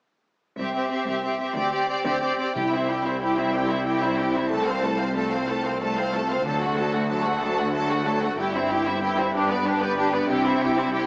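An intense, up-front violin section carries a clear second line beneath a focused, smooth-topped violin melody, while rich violas and cellos fill out the harmony and bass in this triumphant, heroic cinematic cue in 12/8. At 2.6 s a ringing harp begins its fingerpicked arpeggios, soft-attack double basses join in the background, and a round, soft-mallet timpani stroke opens a build-up that runs to the end of the excerpt at 11.1 s. The bowed strings are lush with vibrato in a scoring-stage reverb, and the recording has a small-speaker sound.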